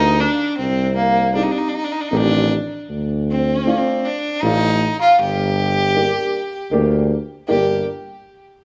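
A single bowed violin sits up front with a biting, earthy tone, light vibrato and a smooth top, carrying the melody through plate reverb and tape echo in this festive yet bittersweet klezmer clip in G minor, cut from a longer piece and moving in 3/4 at 78 BPM. Alongside it, a dark, woody upright piano supplies mellow, natural accompaniment. A close-miked tuba in classical style, warm with light vibrato, holds the low bass up front over a Gm, Cm and Dm progression, all three parts playing from 0.0 to 7.8 seconds in a small, reverberant room.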